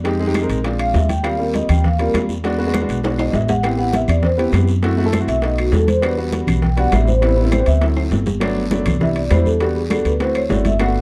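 Afro-Cuban jazz, sophisticated and lively, in a short cut from a longer piece: a mellow vibraphone played with soft mallets and fast motor vibrato carries the solo melody from 0.8 seconds, over a natural-sounding upright piano and a thumpy pizzicato upright bass, both up front. Beneath them sit bright congas, tight high-tuned bongos, ringing metal-shell timbales, woody claves and a raspy guiro, with drum fills at 3.0 and 8.0 seconds. The production is dark and warm with light reverb, and the harmony moves through jazz changes such as Am9, F#m7b5 and Gmaj7.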